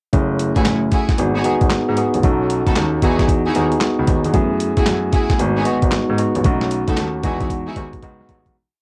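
A hard-swung drum-machine beat at 114 BPM drives this short, bouncy new jack swing piece in F# dorian, its dusty sampler-style kit sitting up front with a thumpy kick, a snare layered with handclaps, hi-hat and a gritty, compressed, cassette-tape grit, ending in a drum fill from 7.5 seconds. A warm grand piano carries the swung synth-funk bass line with muted ghost notes, while a clean tine electric piano, heard through built-in speakers, pushes rootless chords with grace notes and short fills through changes from F#m9 and G#m7 to B7 and Emaj9, closing on C#9sus4. Lush bowed strings with vibrato add short syncopated stabs from 0.6 seconds, touched by tape echo, and the slick, lightly reverberant home cassette recording fades out from 6.4 seconds.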